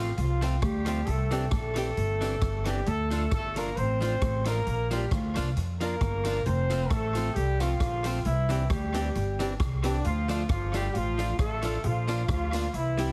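Ska with an upbeat, bouncy swing, this short passage cut from a longer piece cycles through F, Cadd9, Dm and Bb twice over about 13 seconds. A mellow horn section carries the melody up front, its ensemble sound roomy and touched with light vibrato and octave doubling. Beneath it, an upright bass gives a woody, thumpy pizzicato foundation, while a clean, picked hollow-body archtop guitar fills in the accompaniment. The swinging big-band drum kit joins at 0.2 seconds with hi-hat, rim click and a punchy kick, its sound carrying tape echo, and a jingly tambourine sits distant in the background from 0.4 seconds. Light reverb and small room ambience surround a heavily compressed, radio-like overall sound.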